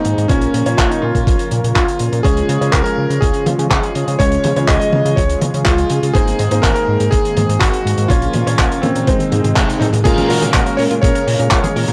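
A bright, clangy electric grand piano carries the melody through analog delay over a mellow, chorused pad, clear concert grand stabs and a crunchy breakbeat kit with dark cymbals, joined almost at once by a glossy, chorused synth bass and an overdriven, thumpy electronic kick in this playful, danceable italo disco excerpt, which has a drum fill from 9.1 s with a band accent at 9.6 s before a very quiet, round analog pluck adds arpeggios at 10.1 s, with small-room ambience and gritty cassette-tape grain throughout.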